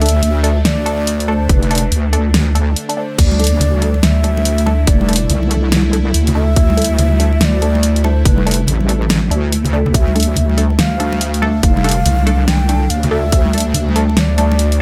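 Cavernous and meditative, this deep dubstep excerpt moves in a swung half-time feel, led by a breathy, close-miked low ney melody with vibrato and dub echo over a tense, string-like bowed drone sitting in the background with reverb and phaser. Muted, deep filtered chord stabs with phaser and dub echo punctuate the space, while a heavy, saturated wobble bass with chorus sits up front alongside a tape-warm deep house kit with a fat snare, hi-hat and crash cymbal. A tight electronic kick joins at 1.5 seconds, and ringing, hard-hand congas enter in the background at 3.3 seconds after a brief break.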